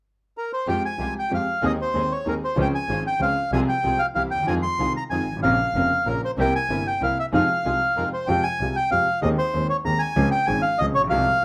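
A reedy, dark bandoneon opens this tense, passionate tango fragment at 0.4 seconds, carrying the melody up front in a smooth line. From 0.7 seconds a clear concert grand piano with a deep, vintage bass accompanies it. A distant double bass, bowed by one player with vibrato, anchors the low end. Behind them, a muted string section played con sordino adds veiled, bowed stabs with a smooth top until 8.1 seconds. The piece moves in 3/4 at 190 BPM with a rubato feel in F minor, passing through chords such as Fmadd9, Ab/Eb, Dbmaj7 and C7 before the opening progression returns. The rough home-demo mix sits in a small, wet room, with plate reverb on the bandoneon, piano and strings.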